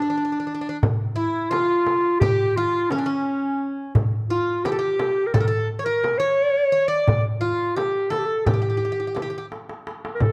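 A classical-style clarinet sings the melancholic, soulful melody up front in this 9/8 makam ensemble piece, joined from the start by a quieter bouzouki whose bright, metallic double strings, some doubled at the octave, pick out a second line until 9.4 s. From 0.8 s a clay-shelled darbuka played with soft hands sits prominently beside a small, close and dry frame drum, and a drum fill arrives at 9.5 s. A moderate recital-hall reverb and dark, warm production give this fragment of a longer piece its brooding depth.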